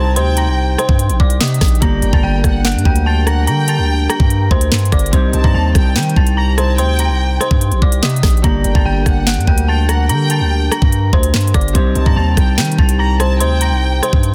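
Dark and menacing, this drill cut rides a half-time feel at 145 BPM in G minor, moving between C minor and G minor chords across roughly 14 seconds taken from a longer piece. An eerie, inharmonic synth bell carries the melody high above the mix, its fast-attack, decaying tones thickened by chorus, softened by a low-pass filter and trailed by digital delay. Beneath it, a lush bowed violin section sits distant in the studio space with soft attack and expressive vibrato, while a bright, fingerpicked Celtic harp rings in the background and a deep, detuned analog pad holds slow-attack chords with a subtle chorus. Up front, a distorted 808-style bass hits heavy and saturated with a gritty noise layer, and the electronic drill kit enters at 0.2 seconds with a knocking kick, sharp snare, crisp hats, handclaps and rim clicks. The whole mix is dense and heavily limited, wrapped in digital ambience.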